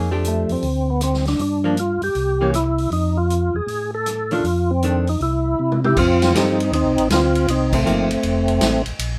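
A clean, hollow-body archtop guitar and a round, dark tonewheel organ bass open this swinging, soulful soul jazz organ trio fragment together, the organ's low line colored by chorus vibrato and a slow rotary speaker. A distant, roomy big-band drum kit joins almost at once, its punchy kick, medium-tuned snare, hi-hat, ride, rim click, toms and crash heard with a rolled-off top. The lead voice is a second, overdriven tonewheel organ, gritty and full with percussive second-harmonic attack, also turning through chorus vibrato and slow rotary, sitting up front alongside the compressed, picked guitar accompaniment. A drum fill at 5.6 seconds leads into a new section at 6.0 seconds, where the harmony moves through F9 and Cm7, and a band accent lands at 7.7 seconds. The guitar drops out at 8.1 seconds as the piece resolves to F, all set in light reverb.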